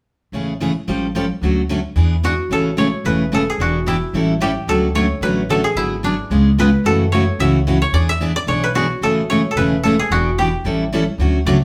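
A dry, fingerpicked koto sits up front and carries the melody from 2.2 seconds in this lively, swinging excerpt of acoustic string swing in the jazz manouche style. A bright, full-bodied picked steel-string guitar, also up front, supplies the accompaniment through jazzy changes like Amaj7, G#m7b5 and C#7, while a dark, thumpy upright bass on gut strings plucks the low end. The band plays live together in one room, set in a wet studio reverb.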